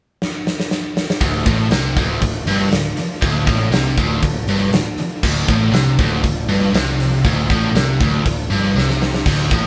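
Classic rock with a driving, brooding mood at 119 BPM in D minor, this excerpt opens with a huge arena drum kit alone, its fill ringing with bright cymbals and a punchy kick in a pumping hall sound. At 1.2 seconds the band lands on D minor together: a biting, double-tracked overdriven guitar riff up front, a thick fuzz guitar riff in the background, and a round, foam-muted picked bass. A very quiet, vintage string machine with cellos holds sustained, slow-attack chords with ensemble chorus, and another drum fill arrives at 8.8 seconds, all in a moderate room that sounds like a band playing live together.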